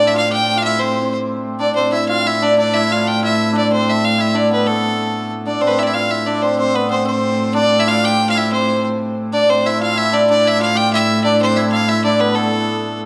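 In a hall-like reverberant space, a clear, up-front bowed fiddle with light vibrato carries an earthy medieval melody in a straight 6/8 pulse, while a shimmering hammered dulcimer rings out a second line beneath it and a reedy, gut-strung viola da gamba holds a steady drone, giving this cut from a longer piece an ancient, driving character.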